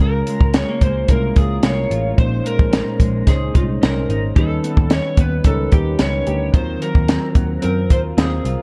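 Indie and bedroom pop at 110 BPM in Db major, dreamy and sunny, where a slightly broken-up slide guitar carries the melody through lush chorus and analog delay over a clean semi-hollow electric guitar with warbly pitch drift, mellow electric-piano-like synth keys with a cassette-tape chorus tint, a round foam-muted picked bass, and a compact cocktail drum kit that enters at 0.3 s up front with a punchy kick and high-tuned snare, all in a dark, dry production moving through Db6, Bbm11, Eb7b13 and a rootless Ab13.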